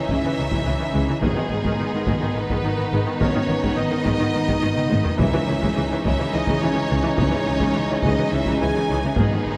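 Dark and epic, this brief cut from a longer cinematic orchestral score moves in an uneven seven-beat metre. A focused, lush violin section carries the melody over a second violin line with a smooth, even top, while violas fill in accompaniment and distant cellos join woody double basses on the bass, all sitting in the background. French horns with a vintage colour and very quiet, soft-attacked trombones hold sustained chords. Distant taiko drums struck with hard sticks drive the pulse from a large room and play a fill at 4.8 seconds, and very quiet timpani with hard mallets and calf heads add articulate strokes at 1.2 and 5.2 seconds. The harmony moves from C# minor with an added ninth to G# minor and back, and a moderate scoring-stage reverb surrounds the ensemble.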